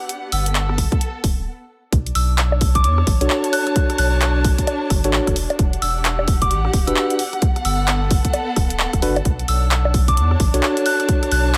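A dry, close-sounding mix with little reverb frames this bouncy, skippy two-step UK garage clip, cut from a longer track and swung on the sixteenths. A rich, bowed studio string section with expressive vibrato and a soft attack pumps under sidechain compression from the start, while a punchy analog drum machine patters with bongos, handclaps, hi-hat and rim clicks. A gentle FM synth bell carries a high, mellow melody through chorus, phaser and tape echo, and an up-front, saturated triangle sub bass sits thick and deep beneath it, joined by a layered electronic kick recorded in a small room. After a brief stop, the drop lands at 1.9 seconds, moving through Bm9, Em9 and Gmaj9. A clean tine electric piano enters at 3.2 seconds with tape-echoed stabs heard through its built-in speakers.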